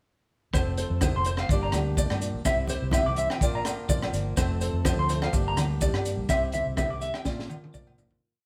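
A joyful, danceable highlife guitar band piece starts with the whole group together in a lightly swung groove. A crunchy breakbeat kit sits up front with a punchy kick, a high-tuned snare and a gritty, saturated sound with a rolled-off top, while a vintage muted fingered electric bass plays a round, foam-muted syncopated riff. Also up front, an electric guitar at the edge of break-up picks compressed, slightly broken-up pedal-note arpeggios in sixteenths, and a fingerpicked plugged-in acoustic guitar adds a boxy, dark syncopated swing accompaniment with audible finger squeak. In the background, ringing agogo bells carry a bell time line and low-tuned congas with thick skin play their pattern with soft hands, while grainy, mellow maracas shake close and dry. The chords cycle through F, Gm, C and Bb twice, with the band sounding live together in a moderate stone room. A fade-out begins at 6.3 seconds, and a drum fill closes the piece from 7.3 seconds.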